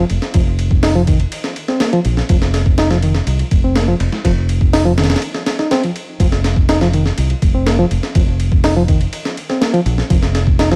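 Vinyl crackle hangs over this short cut from a longer breakbeat track, which moves at 123 BPM in a straight 4/4 with a funky, energetic mood. A reedy, clean electric piano, heard through its built-in speakers, plays a riff between Eb3 and Eb4 with dub echo trailing behind it. Beneath it, a fingered electric bass sits low between F1 and C2, its tone dark, direct and round. The sampler-style drum kit comes in at 0.1 seconds and sits up front, compressed, gritty and pitched up, with a thumpy kick, a high-tuned snare, hi-hat and ride cymbal, all carrying a tape warmth and studio reverb. A break arrives between 5.2 and 6.2 seconds before the groove carries on to the end at 10.8 seconds.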